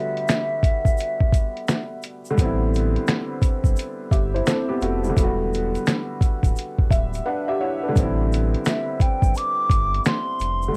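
A cassette-taped home recording with light reverb carries this nostalgic, melancholic lo-fi hip hop excerpt at 86 BPM with a swung 4/4 feel, where a hollow silver flute with pure vibrato sings briefly at the start and again from 8.7 s over soft felt-muted upright piano chords moving between Em11 and Am11, a compressed, pitched-down sampler kit of thumpy kick, fat snare, hi-hat and finger snaps that drops out briefly around a piano fill, a grainy tube shaker tucked behind, and a thick, saturated sub bass entering at 2.4 s.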